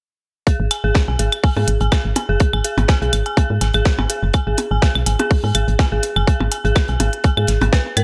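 Sparse and cool, this short minimal techno cut runs at 124 BPM in G# minor with a light 16th-note swing, built around a tight, overdriven electronic kick sitting up front from 0.5 seconds alongside a dark, detuned FM synth bell riff whose eerie, inharmonic tone carries chorus, digital delay and sidechain pumping. A woody, round FM bass with a soft, decaying tone and a fast attack joins at 0.6 seconds, also up front and pumping, while clicky overdriven electronic hats and layered claves and percussion blips with delay fill in the groove. Behind them, a mid-forward acoustic kit of hi-hat and medium-tuned snare sits in the background with a rolled-off top and gated reverb, all within a bright 1980s-style digital production and small room ambience.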